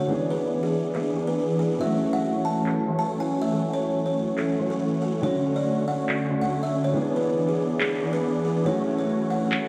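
A dreamy, reverb-soaked mix in a lush hall sets a playful, euphoric future bass mood in a half-time feel, heard here as a short cut from a longer piece. Up front, huge detuned supersaw chords carry the riff with a fast attack and sustained body, shaped by a low-pass filter and analog delay. Beside them, a buzzing kalimba sings the melody with a woody, fingertip-plucked ring, trailed by a diffuse ambient delay. Behind these, a dark, worn grand piano adds boxy accompaniment with audible action noise and an analog delay, while a very quiet ethereal pad holds slow-attack chords with ensemble chorus. Electronic handclaps join at 0.9 seconds in a small room, with low-pass filtering on the hats, snare and percussion and a filter sweep across the drums, as the harmony moves through E7, A6 and Dmaj7.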